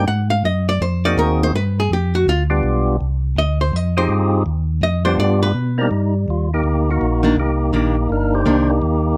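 This smoky, soulful jazz excerpt swings at 165 BPM in 4/4 in C minor, cut from a longer piece. A percussive tonewheel organ carries the melody with a fat, lightly overdriven tone, third-harmonic percussion and vibrato through a slow rotary speaker. Beneath it, a mellow tonewheel organ plays the bass line, round and dark with chorus vibrato, audible key click and a stopped rotary speaker. A miked and amplified archtop guitar adds a picked, compressed, hollow-body electric sound and takes a solo over the first 5.9 seconds. The guitar drops out at 8.7 seconds while the two organs play on to the end. Harmony moves through chords such as Ab7, G7, Fm9 and Ebmaj13 before landing on Cm9, and the close, detailed recording places each part up front in light reverb.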